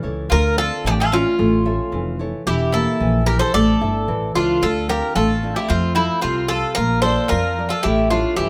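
A metallic, up-front Greek bouzouki carries the melody from 0.3 seconds, its picked double strings, some doubled at the octave, giving a cool, moody edge to this short cut from a longer Greek folk piece in a straight two-beat feel. A softer mandolin adds a picked second line, while a full-bodied, fingerpicked nylon-string guitar and a woody pizzicato upright bass, also up front, lay down the accompaniment from the very start. Light reverb surrounds the band as the harmony moves through Dm7, A and Edim before shifting at 4.6 seconds to a passage that runs Dm7, F and Bb back to A.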